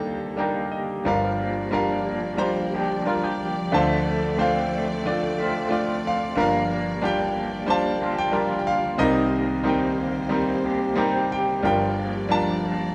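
A clear grand piano sits up front and carries the melody in this melancholic, reflective acoustic folk-pop ballad, its smooth, vintage tone marked by a short sustain. It opens with a brief fill from 0.1 to 1.1 seconds before settling into the main passage. Beneath it, an electric guitar played through a small old amp adds fingered arpeggios with a dark, slightly broken-up, lo-fi and compressed character, colored by tremolo. A symphonic string section holds lush, bowed chords with vibrato and a soft attack, sounding close, expressive and warm. The harmony moves from Ebmaj7 into a cycle around Gm7, passing through Dm7 and Cm7, all set in a moderate large studio reverb, and the recording is cut from a longer piece.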